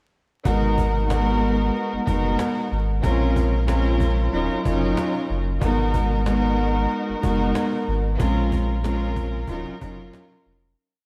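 A dark chamber string section, bowed and intimate with light vibrato, loops chopped minor-ninth chords up front over a deep, full sub bass line with muted ghost notes and a snappy cajon beat set back in the room, giving this tough, gritty boom-bap hip-hop hook at 93 BPM in G# dorian a dreamy, reverb-soaked haze with cassette-filtered strings, vinyl crackle, and a fade-out from 8.2 seconds.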